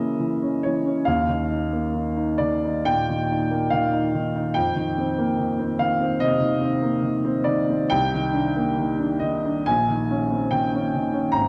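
A clear baby grand piano plays alone, up front and open with long sustain, voicing lush extended chords across a range from its low register to its upper middle in this dreamy, hazy impressionist classical piece. The pulse is loose and rubato, with uneven beats that let each harmony hang, moving from Gb7 through Ebadd9, F9sus4 and Cm9 before settling on Bbm11 at 9.7 seconds. A moderate concert hall reverb and a dark, warm production wrap the piano in soft space, and the 11.5-second passage is cut from a longer piece.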